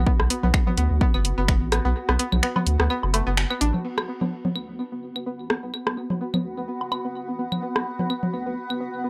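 A dry, gritty hardware sound with transformer saturation and a light touch of reverb frames this cool, hypnotic fragment of minimal techno, cut from a longer piece and swung on the sixteenths. A deep, thick sub bass with a sine-like core sits up front and pumps against the sidechain, while a granular cloud pad drifts high above, blurred and slowly evolving in its own reverb. The riff comes from a bright, twangy, nasal, string-like resonator pluck, coloured by chorus, cassette tape character and analog delay. From 3.8 seconds a filter sweep moves across that pluck. A punchy, overdriven electronic kick drives only the opening, stopping at 1.6 seconds, and a layered techno kit of crash cymbal, finger snaps and muffled hi-hat runs until 4.0 seconds. Tape-tinged electronic rim clicks, woodblock, congas and claves echo through analog delay across nearly the whole fragment.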